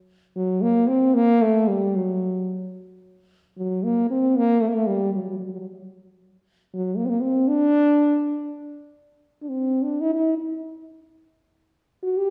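Passionate and festive, this Persian-flavoured excerpt in a straight 6/8 at 75 BPM features a dark, up-front solo French horn played in classical style with light vibrato, sounding from 0.4 to 12.3 seconds across a range of F#3 to G4, and bathed in the lush reverb of a recital hall.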